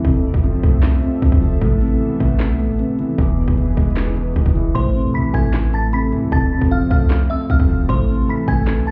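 A half-time trap groove drives this dark, menacing hip hop excerpt: a hard-clipped kick, sharp snare, handclaps and metallic hats sit up front beside a deep, boomy sine 808 and a mellow baby grand piano whose action noise stays audible, while a smooth, detuned sawtooth pad with chorus holds sustained chords in the background. Just before the end of an opening break that runs to 4.8 seconds, a delicate, tinkling FM bell melody with chorus and digital delay enters at 4.7 seconds. The whole mix sounds muffled, as if heard through a wall, with the top end cut off above 10.9 kHz.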